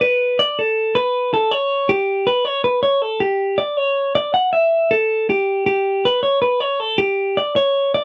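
Intricate and playful, this eight-second rock excerpt moves at 159 BPM in an unusual 5/4 metre with a straight feel, set in G lydian. A lone clean electric guitar carries it from start to finish, its bright, twangy, compressed tone sitting up front as it picks through a line between G4 and F#5, with a new section arriving at 1.9 seconds. The sound is dry and close, like a 1970s studio recording.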